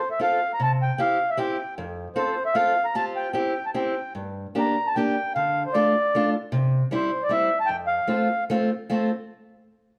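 Alpine folk dance music in a jolly, festive spirit, this fragment of a longer piece moves in a loose, rubato 3/4 at 152 BPM in F major, with a reedy, round, airy accordion carrying the melody up front until 8.4 seconds over a dark, boxy fingerpicked old ladder-braced acoustic guitar whose finger squeaks come through the close, detailed miking, all set in a moderate recital-hall reverb.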